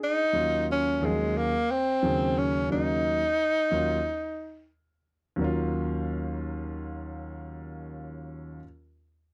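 A breathy tenor saxophone leads this short, cool hip hop fragment, playing a jazz-style solo melody in a subtone with light vibrato and scooped notes until 4.7 seconds. Beneath it, a dark grand piano provides mellow, smooth accompaniment with a vintage character and long sustain, opening on an Ebm7 chord and continuing alone until 8.6 seconds. Both instruments sit up front in the mix. The groove moves at an unhurried 89 BPM in 4/4 with a 60% swing on the sixteenths, giving the Eb dorian harmony a smoky, laid-back feel. A small room ambience and a warm production add intimacy to this brief slice of a longer piece.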